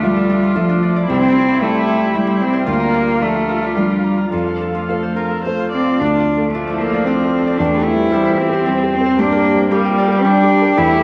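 A dark, veiled muted cello carries the second line with portamento over an intimate felt-muted upright piano, a con sordino viola with vibrato, ringing Celtic harp arpeggios touched by slapback echo, and a glassy, warbling FM pad with ensemble chorus sustaining chords in the background, all settling into a longing, melancholic neoclassical excerpt in D minor at a rubato 113 BPM in 3/4, bathed in a wet echo chamber reverb with small room ambience and shifting at 6.0 seconds from a Dmadd9 opening toward a closing turn on Gm.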